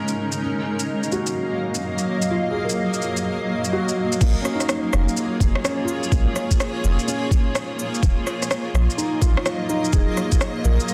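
A cloudy, evolving granular pad sits up front in this nocturnal, wistful future garage excerpt, its detuned unison tones blurred by their own built-in reverb and pumped by sidechain compression as they hold sustained chords in Bb minor. Beneath it, a felt-muted upright piano plays soft, mellow accompaniment with a dark, intimate, vintage character, its audible action noise trailing into tape echo. An overdriven, produced electronic drum kit of cabasa, shaker, rim click and crash cymbal sets a 126 BPM groove in 4/4 with a 63% swing on the 16ths. At 4.2 seconds the harmony moves from Ebmadd9 to Bbm7, and a thumpy, pitched-down, tape-warm kick arrives alongside a deep, round dub sub bass that sits prominently in the mix. Everything rests in a moderate recital hall reverb, finished with a dense, heavily limited master and a layer of vinyl crackle.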